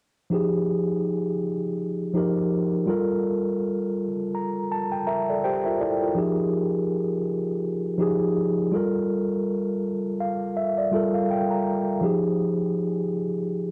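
A mellow, up-front tine electric piano plays alone in this reflective, melancholic hip hop excerpt at 82 BPM, with a swung sixteenth-note feel in F dorian, moving between Fm9 and Gm9 chords and adding fills at 4.0 and 9.8 seconds, its clean tone coloured by cassette tape and set in a moderate spring reverb with digital ambience on a home recording.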